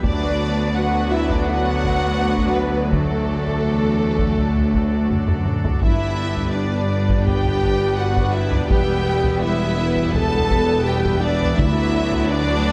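A close, dry taiko ensemble struck with heavy sticks drives this triumphant, adventurous excerpt of epic orchestral film score in G major at 83 BPM, with a drum fill at 5.1 seconds. Over it, a distant, lush violin section carries the melody with vibrato while a second violin line and bowed violas sit in the background, mellow French horns and a shimmering celeste organ stop hold sustained chords, and a mellow tuba, very quiet cellos and a close studio double bass section anchor the bass. Round, soft-mallet timpani on D3 sound only at 2.9 and 11.6 seconds, and the chords move from Bm/D through D, G and Em back to Bm/D in a moderate scoring-stage reverb.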